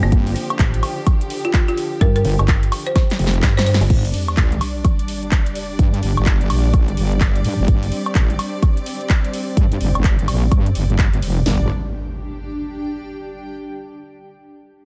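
Bouncy and gritty, this swung bass house passage opens on a drop where a bright, woody folk marimba with hard mallets and digital delay joins a dark, metallic FM bass until about 3.9 seconds, while a lush bowed string section holds pumping chords beneath a heavy, chorused wobble bass that sits up front and gets a filter sweep starting with the first impact; a punchy house kit with cracking snare and a big-room kit with crash, claps and woodblock drive the groove until the final section, an electronic sub drop and impact mark the section changes, and a cloudy granular pad drifts in the background from 5.3 seconds.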